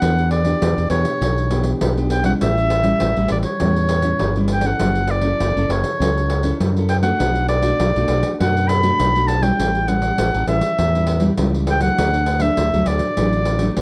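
A festive, lively blend of samba and choro opens with all four parts sounding together from the first moment, in this short cut from a longer piece. A clear, close-miked oboe carries the melody in a classical style, sitting up front with a light vibrato. Beneath it, a nylon-string guitar with fresh strings is fingerpicked in a classical manner, its warm tone dotted with audible finger squeak as it moves through Em7, A7, F#m7, Bm7 and A7 before arriving on D. A bright, fingered electric bass sounds direct and sits up front in the mix, while a jingly pandeiro adds acoustic percussion with the feel of a live room. The whole recording carries light reverb and the worn, warbling pitch drift of old cassette tape.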